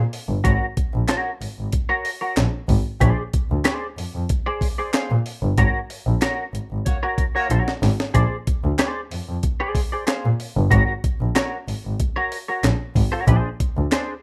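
A straight 4/4 funk groove at 94 BPM struts along with energy, driven by a gritty, pitched-up breakbeat sampler-style drum kit with a thumpy kick, medium-tuned snare, hi-hat and handclaps, and by a rich, bowed double bass with light vibrato, while a bright, clean semi-hollow electric guitar treated with analog chorus plays fingered chords alternating between Ab9sus4 and Bb9. A band accent runs from 5.6 to 8.2 seconds, where a mellow, distant horn section adds a tight second line between 6.9 and 7.5 seconds and the drums play a fill. The sound is a rough home demo mix in digital ambience, cut from a longer piece.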